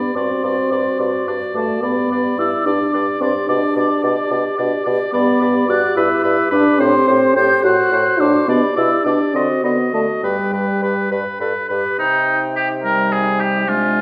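A recital hall's wet reverberation surrounds this brief section cut from a lively, graceful classical-period movement for wind quintet, set in G major at 72 BPM in dotted quarters with a 6/8 metre, a rubato feel and tuning at A4 = 444 Hz. The silver concert flute carries the melody high in its range with a pure, hollow, close-miked tone, tongued notes and vibrato. A warm oboe with light vibrato sits up front on a second line, while a mellow clarinet and a soft-attacked French horn fill in the accompaniment. The bassoon enters at 0.2 s to supply the bass, sounding distant and roomy. The harmony moves through dominant and tonic chords, passing through E minor, A minor seventh and a diminished chord before resolving to G, then turns to C minor at 12.0 s as a new section begins.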